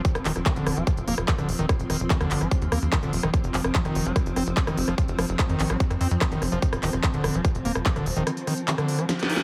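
Driving and psychedelic, this short cut from a longer psychedelic trance track sets a squelchy, gritty overdriven acid bass riff with distortion and dub echo over a tight sequencer bass of saturated sawtooth plucks and a punchy, up-front electronic kick. A tape-warm techno drum kit adds cracking snare, smooth hats, handclaps and rim clicks, while a swarming, detuned drone holds tense, evolving chords with a granular texture and built-in reverb, with the drone and acid bass both pumping. The kick drops out at 8.3 seconds, a drum fill follows at 9.1 seconds, and a reverse cymbal enters at 9.2 seconds, all within a heavily compressed, radio-like sound.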